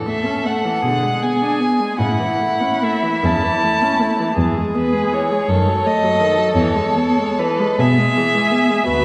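Muted strings open together in this tender, serene slow romantic movement for string quartet, a rubato 6/8 at 46-57 BPM in dotted quarters. A close, up-front second violin with vibrato and a soft attack, an up-front viola with light vibrato and a close cello bass are joined at 0.1 s by a nasal, smooth-topped melody violin with vibrato, all four players dark and veiled with con sordino bowing, heard from further back in a wet scoring-stage space with a dulled top.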